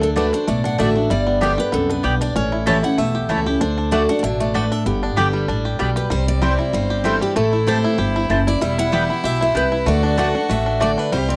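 Bluegrass with a joyful, lively swing, cut from a longer piece: two bright, full-bodied picked acoustic guitars carry the melody and the accompaniment, while twangy, percussive banjo arpeggios and woody upright bass, plucked and up front, drive the groove alongside warm double-strung mandolin stabs. At 6.1 seconds the music moves into a new section and a clear, biting fiddle enters with an earthy second line, its airy bow heard close. The sound is a dry, close 1970s-style studio recording in a small room.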